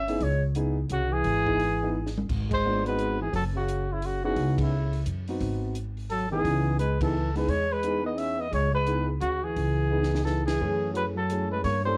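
A mellow trumpet carrying the melody, a breathy trombone on a second line and a woody, thumpy upright bass all sound together from the first instant of this late-night, swinging small-group jazz excerpt, a bop-flavoured waltz in C# minor at 173 BPM with a swung 3/4 lilt. The trumpet sits up front yet roomy and a touch distant, its light vibrato and scooped notes bathed in plate reverb. Beneath it the trombone is whispered and intimate, with a soft attack, its own vibrato and scoops, while the gut-string pizzicato bass stays dark and up front. A boxy upright piano with audible action noise comps from just after the start, and a compact, dry cocktail kit with dark cymbals, a high-tuned snare and a punchy kick adds short fills, one at 1.9 seconds, with the band hitting accents together at moments such as 7.0 seconds. Harmonies move from C#m7 through G#7#9 and B/F# before settling toward F#m7, all colored by a moderate room and a worn, warbling cassette-tape pitch drift that gives the fragment a faded, nocturnal character.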